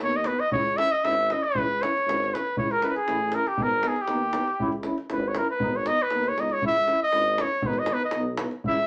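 A warm trumpet with vibrato and a smooth top carries an up-front solo melody over a clear, punchy trombone and a dark euphonium set in the background, a mellow, distant tuba bass with light vibrato, and a deep acoustic davul, in this bittersweet, restless Balkan brass band fragment in C# dorian sharp4 at 118 BPM in 2/4, rocking between G#m and C#m in a wet studio ambience.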